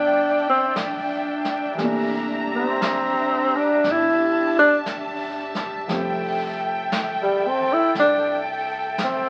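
A slow, intimate late-night jazz ballad in C major at 58 BPM with a gentle swing, this excerpt opens on a breathy, mellow tenor saxophone playing the melody up front with subtone, vibrato and scooped notes, over a soft-attack bowed string section playing sul tasto and an intimate baby grand piano whose action noise can be heard. A woody, thumpy pizzicato upright bass sits in the background, and a brushed drum kit of snare and hi-hat enters at 0.8 seconds as the harmony moves from Cmaj9 through C13 to Fmaj9. Moderate room reverb and the crackle of a very old 78 rpm record lend the sound a dusty, bygone patina.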